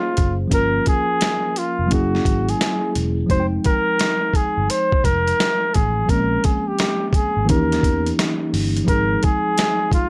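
A moderate studio reverb surrounds this cool, nocturnal jazz-hop clip at 86 BPM in Bb dorian, where a warm, vintage flugelhorn with light vibrato and scooped notes carries the melody up front over a worn, slightly out-of-tune tine electric piano, a dark, round picked electric bass entering at 0.2 s, and a gritty, pitched-down boom bap sampler-style drum kit with a thumpy kick and medium-tuned snare, as the chords move from Bbm9 through Fm9 to Ab6.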